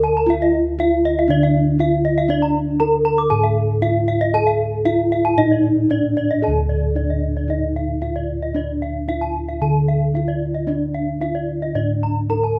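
Balinese gamelan in a brilliant, ceremonial mood, cut from a longer piece, where a mellow, padded bronze metallophone carries the melody over soft, round bossed gongs in the bass while a bright, horn-struck metallophone with slapback echo spins shimmering arpeggios above, all heard dry and close in the open air, with a new section arriving at 6.4 seconds.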